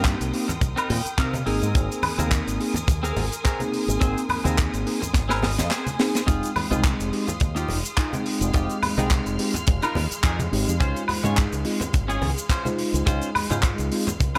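A swung 16th-note groove at 106 BPM drives this groovy, sensual nu-disco excerpt in F minor, where an up-front tight kick and a small-room funk kit with a high-tuned snare, hi-hat, handclaps, cabasa and woodblock lay the foundation, ringing hard-hand congas join in the background at 0.5 seconds, a punchy fingered bass punches through its envelope filter, a twangy picked clean guitar riffs through lush chorus, low-pass filter and delay with fills at 0.6 and 5.1 seconds (the second paired with a drum fill), a worn, slightly out-of-tune tine electric piano pumps through overdrive, phaser and delay, and a distant bowed symphonic string section holds lush sustained chords over a Cm7, Abadd9, Fm7, Dbmaj7 progression.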